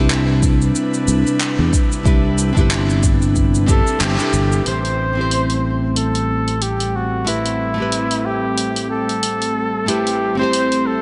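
A loping 4/4 groove with a gentle sixteenth-note swing sets a smooth, warm sunset chillout mood in this short piece cut from a longer track. A deep house kit of cabasa, handclaps and hi-hat ticks along with a tape-warm, layered character, while a deep electronic kick thumps beneath it only until about 3.8 seconds. A growly fretless electric bass sustains low notes, a fingerpicked nylon-string guitar adds classical accompaniment touched by slapback echo and delay, and an airy, breathy pad with a detuned sawtooth edge and noise layer holds slow-blooming chords through a chorus effect. At 3.7 seconds a flugelhorn steps up front with a pop-style solo line, its vibrato carried on a delay, just before a brief band accent near 4.0 seconds. The harmony moves from Cmaj7 to Am7 at 4.7 seconds, and a lush hall reverb gives the whole a big arena sound with a softened top end.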